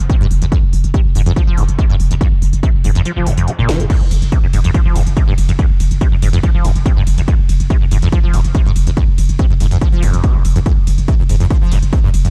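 A squelchy, resonant sawtooth acid bass drives this relentless, intense peak-time techno cut in F minor at 142 BPM, its plucky riff pumping against the sidechain and trailed by chorus and delay. Underneath, a growling, buzzy 808-style bass sits on a low F with tube saturation and a low-pass filter, while an up-front, heavy electronic kick anchors the straight 4/4 and a tape-softened kit adds a cracking snare, smooth pumping hats, ride and crash. The kick drops out from 3.1 to 3.9 seconds for a drum fill at 3.7, all within a dark, warm production with little reverb.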